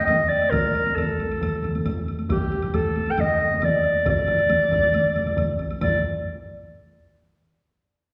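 Drenched in the lingering reverb of a large hall, this ceremonial and powerful excerpt of Japanese traditional taiko music moves at 137 BPM in a straight 4/4 in D miyako bushi, with a mellow, breathy clarinet carrying a jazz-style solo melody up front with light vibrato and a soft subtone from the opening second. A vintage, band-limited solo taiko struck with heavy sticks drives beneath it, backed by three taiko ensembles: two played with heavy sticks sitting in the background of a live room and one with hard sticks sounding distant. A close, woody woodblock adds detail in the background, while the last ensemble joins at 0.5 seconds and the parts fall away around 6 seconds as the passage turns to a new section at 5.8 seconds.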